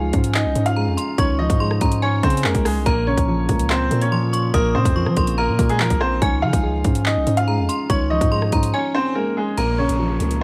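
Menacing and ominous, this half-time drill excerpt sets a bright, woody upright piano melody over a felt-muted, boxy piano accompaniment, a ringing, inharmonic FM bell line with chorus and tape echo, a deep, sine-toned 808-style bass, and an up-front drum kit with a hard-clipped kick, metallic hats, handclaps and rim clicks, all under light reverb and vinyl crackle, with a break at 8.7 seconds and a downlifter entering at 9.6 seconds.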